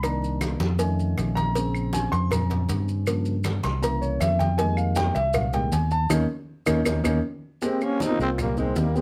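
Afro-Cuban jazz with a danceable, sophisticated mood, cut from a longer piece: a dark, intimate baby grand piano carries a solo over punchy, up-front fingered electric bass, while distant congas, hard-handed cowbell and bongos, woody claves and grainy maracas drive the percussion bed in a lightly reverberant room. A band accent lands at 6.1 seconds, and at 7.6 seconds the music opens onto an Abmaj13 chord as a breathy tenor saxophone enters, joined a moment later by a raspy, growling trombone with plate reverb, both playing scooped, vibrato-laden jazz lines.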